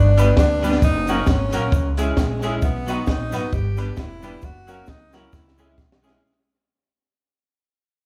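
This joyful, bouncy ska piece opens at 0.0 s with a close-miked tenor saxophone singing the melody with light vibrato and scooped notes, over a pizzicato upright bass with a woody, up-front tone. At 0.2 s the rest of the band comes in: a twangy, clean picked electric guitar in the accompaniment, a brilliant, slightly detuned upright piano playing stabs, a compact cocktail drum kit with a dark, smooth sound, and a grainy cabasa tucked in the background. The drums carry a high-tuned snare, a punchy kick and hi-hat under a rolled-off top, and they share a tape echo with the cabasa. At 133 BPM in 4/4 with a light swing on the eighth notes, the harmony cycles through G, F#, C#m and B, and a drum fill arrives at 5.3 s. The band plays live in one room with a moderate large studio reverb and a touch of vinyl crackle, while a fade-out runs through the whole clip, which is cut from a longer piece.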